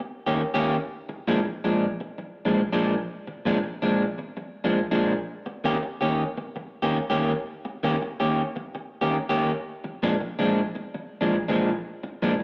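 Swinging eighths at 110 BPM carry this swaggering, laid-back blues fragment in Bb mixolydian, where a lone electric guitar through a small old amp plays up front for all 12.4 seconds with a slightly broken-up, picked tone, a touch of chorus and slapback echo, moving between Eb7 and Bb7 as it rings through a club's PA and reverb.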